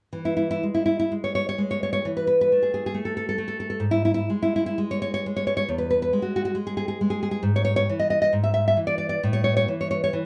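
Nostalgic and sunny, this romantic solo piece for classical nylon-string guitar unfolds in a free, rubato 2/4, its fingerpicked lines spanning from low bass notes to the upper register. The guitar sits up front with a warm acoustic tone and audible finger squeaks, set in light reverb within a dark production. Cut from a longer piece, it moves from E through Eadd11 and a stretch free of any chord near 3.9 seconds, then returns to E before passing through E/G# to an A5 at 9.2 seconds.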